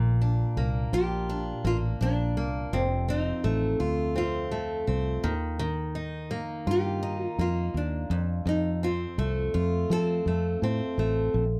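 Close, detailed and nearly dry, this sunny, heartfelt acoustic pop excerpt moves at 84 BPM with a gentle sixteenth-note swing, as an up-front picked steel-string acoustic guitar and a punchy, foam-muted fingered electric bass carry the Bb, F and Ebadd9 changes while a bright, fingerpicked nylon-string guitar enters at 0.9 seconds to sing the melody until 11.0 seconds.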